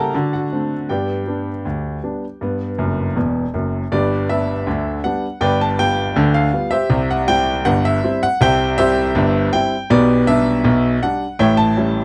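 Lively, cheerful ragtime for solo grand piano in G major, set at a straight 80 BPM in 2/4, this short fragment runs from the deep low register up into the treble. The piano sits up front with an intimate, natural tone and audible action noise, captured in a dry, close 1970s-style studio sound with light reverb. A piano fill at 2.8 s leads into a new section at 3.9 s, where the harmony moves through G7, C and G/B before landing on A7 at 11.4 s.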